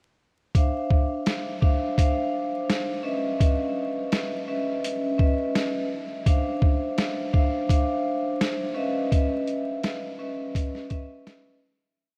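A dreamy, reverb-soaked mix dusted with vinyl crackle sets a moody, dark tone for this short boom-bap hip-hop piece with a slight swing. Up front, a gritty, pitched-down sampler-style drum kit plays a sparse beat of thumpy kick, medium-tuned snare and quarter-note hats. Chopped vibraphone chords, metallic and ringing with the motor off and given a cassette-tape tint, repeat like a sampled loop, moving between Dm9 and C#m9 until a fade-out from 9.1 seconds.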